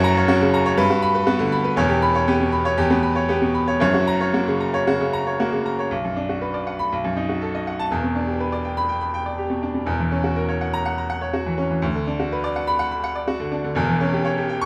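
This is a classical virtuoso piano study in B minor, passionate and agitated, moving at 122 BPM in 4/4 with a free, rubato feel. A solo baby grand piano carries the whole piece, its tone brilliant and open and placed up front, ranging from E1 up to C#6. The opening phrase circles around F#, Gmaj7 and C#m7b5/E before returning to F#, and at 5.9 seconds a new section settles onto Bm and presses on through B7, Em7 and F#7/E. The harmony closes on Bm/D and C#dim/E, and this 14.7-second passage is cut from a longer piece. A light reverb surrounds the piano, and the overall production leans dark and warm, set against the instrument's bright edge.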